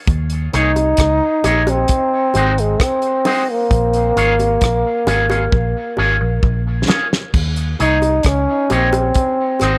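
A light reverb and small-room ambience frame this short, laid-back roots reggae passage, cut from a longer piece, with a hypnotic, unhurried straight feel in 4/4. A damped 70s drum kit sits up front with a fat snare, tight kick, rim clicks, hi-hat and dark, dry crash cymbals, and it plays a fill from 5.5 to 7.3 seconds before the section repeats. Beside it, a vintage foam-muted fingered electric bass gives a round, punchy, amped low end, also placed up front. From 0.5 seconds a breathy trombone carries the melody as the soloist, intimate and whispered with a soft attack, vibrato and tape echo. An electric guitar through an envelope filter adds bright, twangy, clean picked accompaniment with its own tape echo, while low-tuned bongos, struck with hard hands, sit in the background from 0.8 seconds. The harmony moves through Eb7sus4, Ab7 and Bbm7 before circling back to Eb7sus4 and Ab7.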